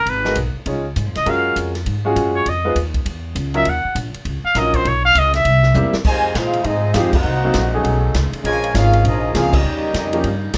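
A warm, up-front solo trumpet leads this brassy, sultry stretch of big band swing, its vintage tone carrying light vibrato and scooped notes through the first 6 seconds at a brisk 201 BPM in 4/4. Beneath it, a woody, thumpy pizzicato upright bass on gut strings and a natural-sounding grand piano lay out the changes. An airy, polished drum kit with a punchy kick and medium-tuned snare swings the eighths, setting up the next passage with a drum fill at 5.8 seconds. At 6.1 seconds the music settles into F minor and the full band arrives: a clear trumpet section takes the melody, a cup-muted trombone section adds a veiled, distant second line, and a very quiet saxophone section, entering a moment earlier at 6.0 seconds, holds sustained chords. Band accents punctuate this passage, and light reverb lends the kit a hall-like sense of space.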